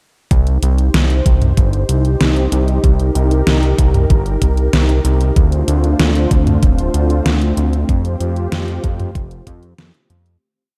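Synthwave with a moody, cinematic air, built on a thick, detuned sawtooth bass with tube saturation and a driving eighth-note line that sits up front, beneath a mellow, slow-attack pad carrying sustained chords through chorus and sidechain pumping. An overdriven, knocking machine kick and a layered pop kit with a deep snare, closed hi-hat and low toms mark out an 80s backbeat, with the kick dropping away at 9.6 seconds. The chords move from Cm to Dm7 and Fadd9 as the piece fades out from 7.0 seconds, set in a dark production with light digital reverb.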